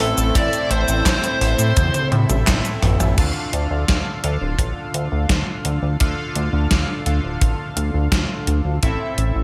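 A smooth, overdriven electric lead guitar carries the melody over a moody, cinematic synthwave groove in D minor at 85 BPM, shadowed by a very quiet, airy sine lead with vibrato, while a lush, detuned unison pad breathes in the background with chorus and sidechain pumping. Beneath them, a glossy, nasal synth bass with tube saturation sits up front beside retro polysynth stabs with delay and filter sweeps, and a gated 1980s digital drum machine of snare, handclaps, hi-hat, shaker, toms and crash drives things alongside a punchy big-room kick. Both leads drop out at 2.1 seconds, a drum fill leads into a shift from A minor to D minor at 3.2 seconds, and the bright, lightly reverberant digital production keeps the bass, polysynth and drums going from there.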